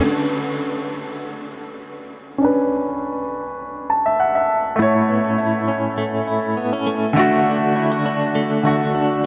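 Hypnotic and sultry, this dancehall excerpt moves at 101 BPM in B minor, with a clear concert grand piano carrying the accompaniment throughout, its deep bass and short sustain softened by a low-pass filter and a piano fill arriving at 3.6 seconds. A direct-recorded clean electric guitar plays bright, twangy arpeggios treated with tremolo, analog delay and a low-pass filter, sounding briefly at the start and returning at 4.8 seconds as the chords move from Bmadd9 to A and then D. A filter sweep runs across the whole passage, and a huge ambient reverb with a 7.6-second decay soaks the mix in a dreamy haze.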